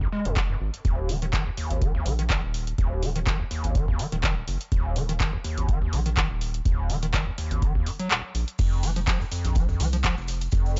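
A squelchy, distorted acid bass riff with lush chorus and analog delay opens this hypnotic, driving acid house excerpt at 124 BPM in F phrygian, pumping alongside a round, dark square-and-sine bass and a deep electronic kick, soon joined by a booming analog drum machine with metallic hats, handclaps and crash, before the kick drops out at 8.1 seconds and a very quiet, dry reggae kit with a high-tuned snare and a grainy, distant cabasa slip in at 8.6 seconds, all set in a gritty small-room sound.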